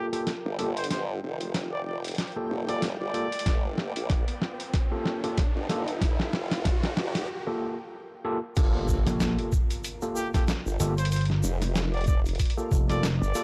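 A playful, swaggering glitch hop excerpt, cut from a longer piece, opens on a Gm9 chord with a clear trumpet melody, barky overdriven electric piano stabs carrying fast tremolo, sidechain pumping and tape echo, a very quiet granular cloud pad, and a gritty, pitched-down boom bap drum kit running a fill under an electronic riser. A formant-sweep wobble bass with chorus and tube saturation sits up front, a thumpy electronic kick arrives at 3.5 seconds, and after a brief break the drop lands at 8.6 seconds with an impact and a bright, grainy tube shaker, followed by a punchy vintage slap bass and then the returning trumpet. The sound is dry and gritty, with cassette-tape character.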